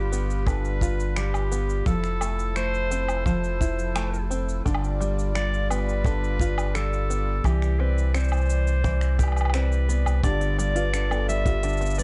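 A bright clarinet carries the melody in a soft-attacked, vintage classical style, floating over a playful folktronica groove at 86 BPM in a straight 4/4 and G mixolydian. Beneath it, a reedy, sweet accordion with light tremolo tuning and a gritty 12-bit sampler character holds sustained chords, while a fingerpicked open-back banjo plays twangy, plunky arpeggios through a digital delay. A deep, round sine sub bass with tube saturation sits up front, joined by a punchy acoustic kick played with brushes in a small room and an organic electronic kit of cabasa, finger snaps, crisp hi-hat and woodblock, tape-warmed and re-recorded in a large room. The harmony moves through G7, Fmaj7 and Cmaj7, and at 10.2 s a mellow, woody marimba with soft mallets adds an airy second line in the background, also through a digital delay. The mix is dark, with light reverb and the top end rolled off above 10.9 kHz, and this excerpt is cut from a longer piece.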